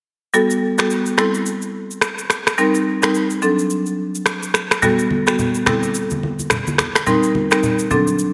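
A swung sixteenth-note afrobeats groove at 107 BPM drives this joyful, romantic excerpt in G major, carried by an overdriven, produced-sounding electronic shaker, rim click and finger snaps sitting up front. A woody, percussive marimba with medium hard mallets and a boxy small-room tone plays the accompaniment over chords moving from Gmaj9 through C6 and Eb6 to D7. Bright, low-tuned congas played with soft hands join at 4.8 seconds, all bathed in a dreamy, lush hall reverb.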